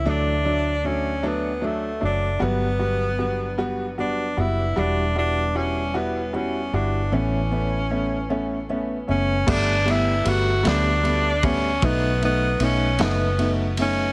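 In a swaying 6/8 at 51 BPM, this heartfelt pop ballad fragment sets a vibrato-rich tenor saxophone melody with digital delay up front over a dark fingerpicked steel-string acoustic guitar in the background, a round, foam-muted vintage electric bass and a woody, boxy upright piano through chords from D and Gmaj7 to Emadd9 and Aadd9, before a loose, saturated indie drum kit with a fat snare and punchy kick enters at 9.5 s as the harmony moves to Gadd9 and B7, all in light small-room reverb.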